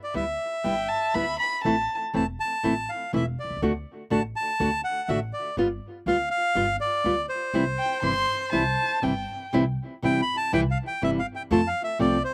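Dry and close, as if played outdoors, this nostalgic, elegant tango excerpt moves at a rubato 122 BPM in C major, with a reedy, bright bandoneon carrying the melody up front over fingerpicked nylon-string guitar chords and a woody, thumpy pizzicato upright bass, while a bowed violin adds an expressive second line with vibrato and portamento at 0.6 seconds and again at 7.8 seconds.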